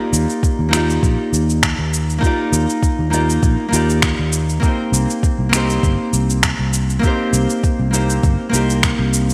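A lightly swung sixteenth-note groove in 4/4 drives this wistful, smooth sunset chillout passage, cut from a longer piece. Electronic shaker and finger snaps sit up front with a tape-tinged, produced character, while a soft electronic kick enters at 0.4 seconds, both touched with studio reverb. A sustaining fretless electric bass, amped and growly, holds the low end prominently from 0.1 seconds. Over it, a full-bodied nylon-string guitar is fingerpicked in a classical manner, its notes trailed by delay as the harmony moves from Ebmaj9 to Cm7 at 4.6 seconds. The whole is bathed in a lush hall reverb and carries a bright, 1980s-style digital sheen.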